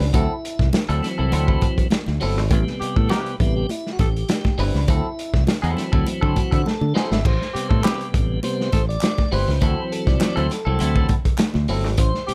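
Funk groove at 101 BPM in straight 4/4, hypnotic and funky, cut from a longer piece and vamping between D9 and Am9. A tonewheel organ with a piping, clean tone through a slow rotary speaker takes the solo throughout, playing stabs that range from B2 to E5. Up front sit a warm, direct fingered electric bass and a crunchy breakbeat kit that sounds saturated and gritty, with dark cymbals, a tight kick and a rolled-off top, plus a short drum fill at 6.7 seconds. A bright, twangy clean electric guitar, compressed and treated with phaser and plate reverb, adds accompaniment, while very quiet high-tuned congas play along with soft hands, close and dry. From 2.8 seconds a growling tenor saxophone, breathy and raspy with vibrato and subtone, plays a second line between G4 and A4. Hollow group handclaps join in the background at 7.8 seconds, and the overall mix stays dry with little reverb.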